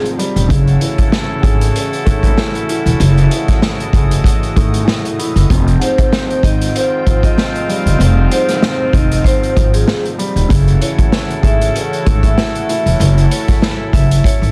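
A dark, gritty boom-bap hip-hop excerpt opens with a mellow, woody upright piano colored by cassette tape, a lush, detuned unison pad with chorus in the background, and distant, soft-attack jazz horn stabs trailing tape echo, before a punchy vintage drum kit with a pumping small-room sound and a thumpy gut-string upright bass played pizzicato come in up front over swung sixteenths and chords moving from Gbm9 to Fm9 and back, with a ringing, metallic vibraphone melody with slow motor vibrato arriving at 5.8 seconds, all under a dense, heavily limited master dusted with vinyl crackle.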